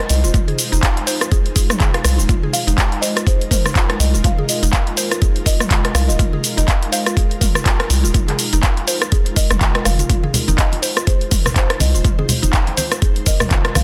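A knocking electronic kick drives a 123 BPM pulse with a 58% swing on the sixteenths, alongside an up-front deep house kit of handclaps, dark hats, rim click, shaker and toms. This is a spiritual afro house passage in F minor pentatonic, cut from a longer piece and resting on a single Fm7 chord throughout its 13.8 seconds. A round, deep analog bass sits prominently beneath, its nasal, sine-like tone pumping against the kick. Higher up, an ethereal, airy pad holds sustained chords with ensemble chorus, tremolo and its own reverb, while a woody, percussive FM pluck spins arpeggios in the background through chorus, phaser and delay. A buzzing marimba played with soft mallets carries the melody between C5 and F5, dry but for a touch of delay, and bright, close congas join at 10.2 seconds. The mix is dense and heavily limited, with little room sound.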